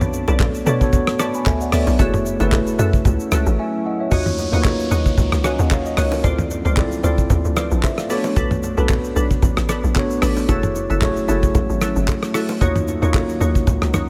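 Deep and late-night, this amapiano excerpt at 113 BPM with a swung 16th feel rides a tight, punchy log drum bass and a damped, dry 70s drum kit of kick, rim click, handclaps, hi-hat, shaker and toms, while a worn, slightly out-of-tune tine electric piano sits up front over a glassy FM pad with ensemble chorus, reverb and sidechain pumping, joined by a crystalline, nasal wavetable pluck with chorus and tape echo, very quiet bongos and congas, and an electronic downlifter from 4.1 to 8.4 seconds as the chords move through Bm7, Gbm7, Ebm7 and Dm7.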